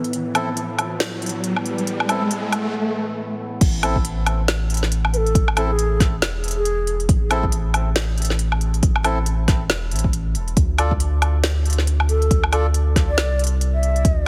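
A heavily compressed, radio-like sound with light reverb frames this heavy, dark deep dubstep excerpt at 138 BPM in A harmonic minor, swung and felt in half-time. A resonant sawtooth drone with moving overtones, treated with chorus and phaser, holds sustained chords under an up-front riser, deep house drums with a woody snare and smooth hats, and reedy, nasal melodica stabs carrying dub echo, before a break at 2.7 seconds. The drop at 3.6 seconds brings in a round, soft sub bass and a layered electronic kick, while a breathy, bright low ney with vibrato plays an expressive, echoing melody from 5.1 seconds and again near the end.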